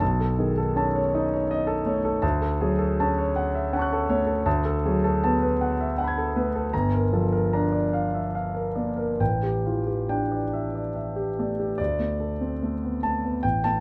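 Light reverb surrounds this hazy, nocturnal fragment of impressionist classical solo piano, tuned to A4 = 442 Hz and drifting in a rubato 3/4 at 67-83 BPM, where a dark, mellow concert grand sits up front with an intimate, vintage tone, deep bass and audible action noise, moving through chords such as B9 and Dmaj7 from F# minor into D minor at 6.7 s before a new section begins at 11.8 s on a bare D5.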